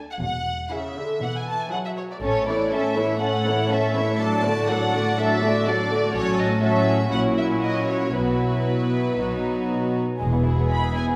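Cheerful and graceful, this quick classical-period movement for string orchestra moves with a gently flexible, rubato feel and is cut from a longer piece. A rich, floating violin section carries the melody high above, its soft attack and sul tasto bowing giving it a pure, distant glow. A second violin section adds a smooth-topped inner line, while an up-front, warm viola section fills in the accompaniment. Dark cellos anchor the bass with light vibrato and an intimate, close presence, and the double basses join them, dropping out at 2.7 seconds and returning at 6.1 seconds. The harmony travels from E through A and D toward a suspended B chord before settling back on E at 10.2 seconds, all framed by the wet reverb of a recital hall.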